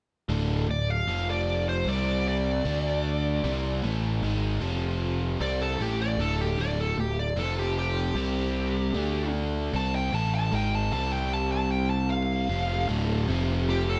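In a straight 4/4 feel, this gritty, brooding rock excerpt pairs a biting, double-tracked overdriven guitar riff with a punchy fuzz-laden picked electric bass, both up front from 0.3 seconds, while a smooth, bright overdriven lead guitar with slapback echo carries the melody from 0.7 seconds, all under light reverb, with a new section arriving at 12.9 seconds.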